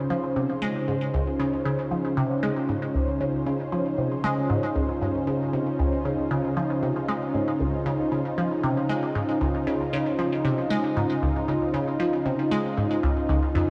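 A straight 4/4 pulse at 116 BPM drives this expansive, luminous stretch of sequencer-driven ambient space music in Db major, cut from a longer piece and resting on a single Dbmaj7 chord. A squelchy, resonant blip pluck sits up front with its bright riff from 0.1 seconds, coloured by phaser, chorus, cassette tape and delay, while a thick, detuned unison pad holds sustained chords with a slow attack and chorus. From 1.2 seconds, a barely audible, breathy wind-like noise texture drifts underneath, all set in a wet concert hall reverb with a dark overall production.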